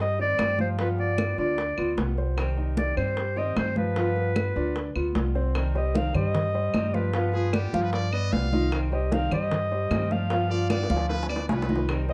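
A dark, warm production carries this danceable, nostalgic Cuban son and guajira piece, where a smooth-topped clarinet sings the melody up front over a thumpy gut-string upright bass, fingerpicked flamenco guitar, intimate grand piano arpeggios with audible action noise, damped high-tuned congas, tight vintage bongos and woody claves set in the background, until a brilliant, forceful trumpet adds a scooped, vibrato-laden second line at 7.3 seconds.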